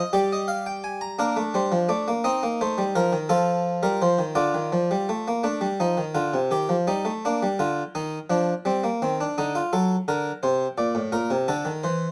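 Closely miked and lightly reverberant, this brief fragment of a baroque-style three-part fugue in 6/8 features a solo harpsichord with a round, plucked Flemish tone on a single set of strings, sitting up front as it weaves contemplative yet driving counterpoint spanning its low register and its upper range, shifting into a new section at 5.4 seconds.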